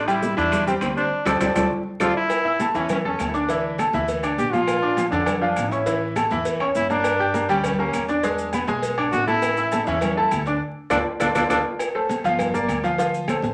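A punchy, forceful trombone with vibrato leads this passionate, danceable salsa excerpt up front until 11.6 seconds, over a bright concert grand piano with audible action noise, a thumpy pizzicato upright bass on gut strings, and a background bed of ringing congas, tight bongos and cowbell, metal-shelled timbales and agogo bells, woody claves and grainy maracas, with band accents and drum fills marking the phrase ends and club reverb and vinyl crackle over the whole mix.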